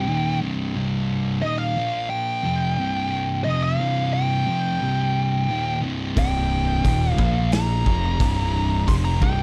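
Stoner and doom metal in C minor at 89 BPM, this ominous, heavy fragment is cut from a longer piece and moves in a straight 4/4. Two thick, dark fuzz guitars grind out the riff from the start, low and distorted, while an up-front fuzz lead guitar carries the melody high above them, colored by wah, distortion and a slapback echo. At 6.2 seconds a fuzz picked electric bass enters, overdriven and up front, alongside a raw garage drum kit of hi-hat, kick and snare, saturated and gritty with a punchy kick, a medium-tuned snare and a rolled-off top in a bright stone room that pumps. The harmony sits on C minor, shifting twice to Bb5 and back, and the passage closes on C5. A small room ambience surrounds the whole band.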